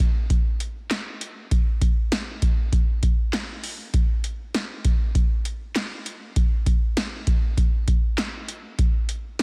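A straight 4/4 beat from an analog electro drum machine drives this short pop fragment, its deep kick and punchy snare joined by handclaps and metallic hi-hats. The upbeat yet wistful groove sits up front in a dense, heavily limited modern mix, with a short room touch on the snare, clap and hats.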